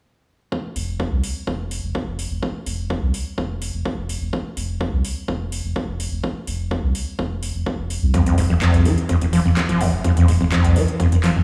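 Acid house with a gritty, raw mood, cut from a longer piece: a punchy, tape-warm electronic kick with a high-pass filter drives alongside a round, sine-like sub bass under a filter sweep and sidechain pumping, while an overdriven analog drum machine adds handclaps and metallic hats, and at 8.1 seconds a squelchy, resonant sawtooth acid bass riff arrives up front, saturated with subtle chorus, cassette tape grit and tape echo, all heard as if played on a big sound system in a bare stone room.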